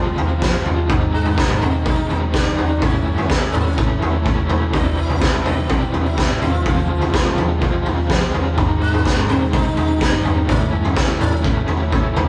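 Psychedelic rock with a hazy, kaleidoscopic mood at 125 BPM in straight 4/4, cut from a longer piece, where a buzzing, shimmering sitar melody hangs in the background over a bright, overdriven, double-tracked garage guitar riff with tremolo, a dark, round hollow-body bass sitting very quiet beneath, and a gritty garage drum kit with a boomy kick, a high-tuned snare and toms entering at 0.2 s up front, all played live in one room with moderate large studio reverb as the chords move from Fmadd9 through Ab, A and Cadd9 to Fm, then back through Ab to A.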